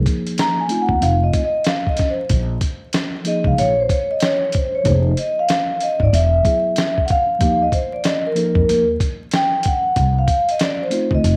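A ringing, band-limited vibraphone played with soft mallets and a slow motor vibrato carries the melody through this smoky, mellow jazz-hop excerpt at 94 BPM, over a clean tine electric piano heard through its built-in speakers, a growly, woody pizzicato upright bass entering at 0.9 seconds, and a gritty, tape-warm sampler-style drum kit with a thumpy kick, all wrapped in light reverb and vinyl crackle.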